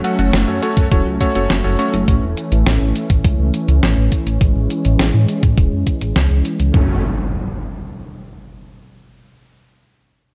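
Cinematic and nostalgic, this short synthwave passage moves at a straight, steady pace in 4/4 over a harmony that shifts from F# minor to A and back. A soft, full-bodied supersaw holds sustained chords with a gentle attack and sidechain pumping, while a low-pass filter sweep runs through it until 6.7 seconds. Beneath it, a dark, glossy synth bass with chorus, tube saturation and its own pumping sits up front, its pulse-width and sawtooth tone evolving under a filter sweep. A bright, cutting electric grand piano with a clangy low end throws out delayed stabs only in the opening 1.9 seconds. A clean 12-bit drum machine supplies hi-hat, shaker and a fat snare, joined by a thumpy, up-front electronic kick from 0.8 seconds. At 6.7 seconds the drum machine drops out, and the kick, bass and supersaw follow moments later as an electronic impact rings out under light reverb, closing this excerpt of a longer piece.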